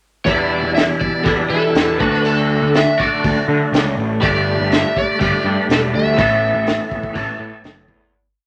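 Wet studio reverb gives this short psychedelic rock piece a mysterious, trippy air in a straight four-four. A crunchy breakbeat drum kit, heard in a small room, carries a big rock groove, its dark, gritty, rolled-off sound built on a punchy kick, a high-tuned snare and hi-hat. Up front, a fuzz-drenched picked electric bass plays a syncopated riff, while a bright, twangy electric guitar rings out clean, compressed chords through a rotary speaker. An overdriven slide guitar, played with fingerpicks, sings motif-based song phrases above, and a very quiet vintage combo organ holds a mellow pad with light vibrato. The verse moves through Em7, D, Gsus2 and Asus2, and the whole piece fades out from 6.2 seconds to its close at 8.1 seconds.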